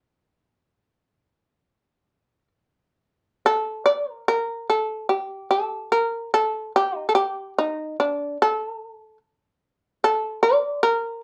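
Japanese traditional music, calm and austere, in which a solo shamisen plays freely in rubato at roughly 65-75 BPM in D miyako bushi, tuned to A4 = 436 Hz, its bright, buzzing, percussive plectrum-plucked tone sitting powerful and up front in light reverb as the phrase moves into a new section at 3.4 s within this brief cut from a longer piece.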